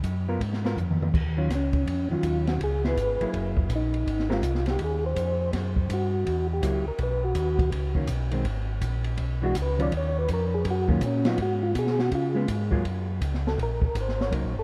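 Late-night and smoky, this soul jazz organ trio excerpt swings easily, with a mellow, round tonewheel organ carrying the bass line up front through a slow rotary speaker, complete with a touch of key click. An open acoustic drum kit with dark cymbals and a boomy kick plays a short fill just before 1.1 seconds, ushering in the solo section, and at 1.6 seconds a second, flute-like tonewheel organ enters with a soft, percussive solo coloured by chorus vibrato, slow rotary and tape echo. A clean, fingered hollow-body electric guitar comps underneath, dropping out between 4.4 and 6.6 seconds, all set in a light studio reverb.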